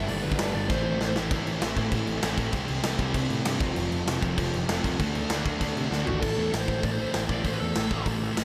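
A punchy, up-front rock drum kit with a natural big-room snare drives this raw, urgent punk rock fragment, with fills at 0.7 and 5.9 seconds. A sludgy distorted guitar sits equally close, backed by a bright, cranked stack guitar with slapback echo that drops out at 6.2 seconds and a growling, overdriven picked bass further back. A dark, smooth overdriven lead guitar with slapback and tape echo adds brief melody at the opening and again from 6.1 seconds, all set in a lush hall reverb with a big arena sound.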